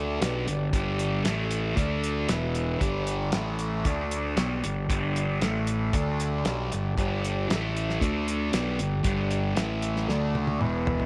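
Psychedelic rock at 116 BPM in a straight 4/4, this short excerpt from a longer piece has a kaleidoscopic, hypnotic mood, tuned slightly flat of standard pitch. A thick, double-tracked fuzz guitar sits up front with a picked riff, its distortion coloured by phaser, while a growly, punchy fuzz bass played with the fingers adds overdriven weight underneath. A vintage combo organ holds mellow, clean sustained chords through a phaser, sitting lower in the mix. The cloth-damped drum kit enters at 0.2 seconds with a fat snare, tight kick, hi-hat and toms, its rolled-off top giving a thuddy, small-room character, and it closes with a fill from 10.1 seconds. The chords cycle through G5, A5 and D5 power chords, with a single E5 passing early on, all set in a light studio reverb.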